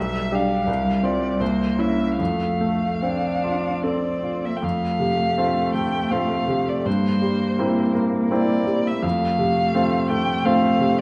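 Classical chamber music for piano trio, this slow romantic movement in 3/4 unfolds with a serene, tender mood and a flexible, rubato feel, cut from a longer piece. A muted violin carries the melody with a dark, veiled tone and vibrato, sounding up front despite its distant quality. Beneath it, a muted cello offers a second line, its bowed sound shaded with light vibrato, soft attacks and gentle portamento. The bright grand piano provides the accompaniment, brilliant and natural in tone, and it sits somewhat louder than the two strings. The trio plays together throughout, with a new section arriving at 4.6 seconds, and the chords settle on F at 9.0 seconds. A wet recital hall reverb surrounds the ensemble, lending the performance a spacious, intimate glow.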